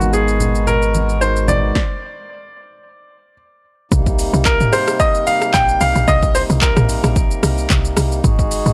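A clear, polished baby grand piano carries the melody through tape echo in this soulful, hypnotic amapiano excerpt at 111 BPM with a 16th-note swing, over Abm7 with a tine electric piano under lush chorus, a reedy, breathing pedal harmonium pumping with the sidechain, soft-handed congas in the background and a thick sine sub bass. The congas, sub bass and electric piano fall away between 1.6 and 1.8 seconds for a stop, leaving the piano, harmonium and an overdriven deep house kit of deep kick, punchy snare, metallic hats, handclaps, rim clicks, shaker and toms. At 3.9 seconds the drop lands on Cm7 as a woody, percussive log drum bass enters, all heard through a dry, gritty hardware sound with transformer saturation.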